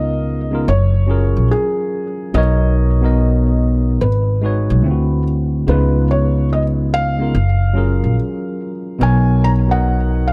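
A felt-muted upright piano carries the melody with a soft, intimate tone, its thick felt and audible action noise colored by tape echo, in this reflective, hazy hip hop excerpt at 72 BPM with a swung 16th-note feel. A clean tine electric piano, heard through its built-in speakers with a cassette tape tint, sits up front with the accompaniment, while a woody, pizzicato upright bass anchors the low end as the most prominent part. Light reverb and studio ambience frame the dark, warm production as the chords drift from C#13 through F#maj9, Bmaj9 and D9.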